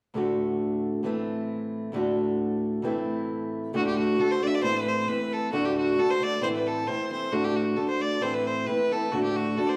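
A clear, focused fiddle carries the melody in this lively, rollicking Celtic folk piece. It enters at 3.8 seconds, bowed by a single player with light vibrato and a smooth top, sitting up front. Beneath it, a fingerpicked acoustic archtop guitar opens alone from 0.1 seconds with a warm, boxy tone, also up front, alternating between D and A minor chords in D mixolydian. The tune moves at 134 BPM in 2/4 with a gentle swing on the eighth notes, shifting into a second section as the fiddle arrives. Recorded live in one room, the pair sits in a large, wet studio reverb that gives this cut from a longer piece an open, roomy feel.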